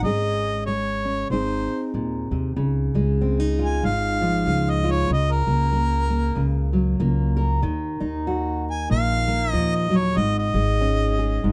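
A dark, warm production with light reverb frames this short cut from a longer acoustic folk piece, played by a small group in a gentle, hopeful mood. At 95 BPM in 4/4 with a lilting swing on the eighth notes, it sits in Db major, tuned slightly low to A4 = 438 Hz. A fingerpicked steel-string acoustic guitar sits up front with an auditorium-sized body, supported by a woody, growly pizzicato upright bass in the low register. A harmonica carries the melody from the start, its soft attack, light vibrato and classical phrasing giving it a warm tone, and at 2.6 s it moves into a solo that runs to the end at 11.5 s. Underneath, the harmony drifts from Absus4 and Ab into Dbadd9, Gb over Db and Ebm before settling back on Absus4.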